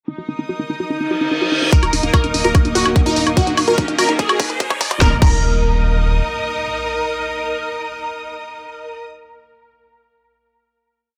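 An evolving wavetable pad, a woody wave-folded pluck riff and a clear, distant string section open this short, driving psychedelic trance piece at 146 BPM, joined from 1.7 seconds by a tight, up-front four-on-the-floor kick, programmed hats and a cracking snare and a punchy detuned supersaw stab melody, then moments later by a round analog bass and a faint metallic wobble bass, with background risers and transition effects carrying the build to a final chord that the strings and supersaw hold until 9.1 seconds.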